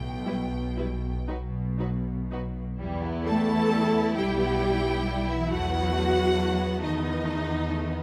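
Yearning and elegiac, this short excerpt from a slow romantic movement for string orchestra unfolds in a rubato 6/8 at about 38-46 BPM in E minor. A rich, vibrato-laden violin section carries the melody above a dark, soft-attacked cello section and an up-front double bass section, while a smooth-topped viola section enters at 0.2 seconds and a lush, distant second violin line joins at 0.3 seconds. Close, detailed microphones and light reverb give the bowed ensemble a clear, present sound as the harmony moves from E minor to B7 over E at 5.5 seconds.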